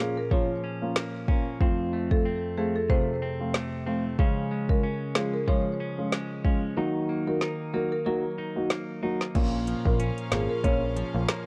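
Dancehall at 93 BPM in Bb minor, hypnotic and tough, where a woody marimba melody with digital delay rides over a dark, boxy grand piano and a clean, twangy electric guitar's arpeggios, an up-front electronic afro-pop kit with a deep kick and metallic hats joins at 0.3 seconds before its kick drops out at 6.8 seconds, and at 9.3 seconds a punchy picked bass and distant, earthy chamber strings with sidechain pumping arrive, all in a small room through worn, warbling cassette tape in this short cut from a longer piece.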